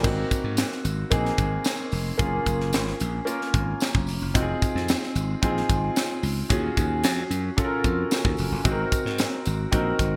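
A straight 4/4 groove at 112 BPM drives this breezy, glossy slice of polished 1980s jazz-funk pop, cut from a longer piece. Up front, a crisp fusion drum kit with a high-tuned snare, punchy kick, hi-hat and crash cymbal sits in an airy studio room, its gated reverb giving the hits that bright 1980s digital sheen. A growly, direct-amped electric slap bass plays between F1 and Ab2, while a clear concert grand piano with deep bass and long sustain fills out the accompaniment in the Bb3 to Bb4 range, dressed in a lush chorus. A jingly tambourine sits close and very quiet beneath everything else. The harmony moves from Ab7 through Gbmaj9, Fm7 and Ebm11 before returning to Ab7 at 8.7 seconds, all within a light studio reverb.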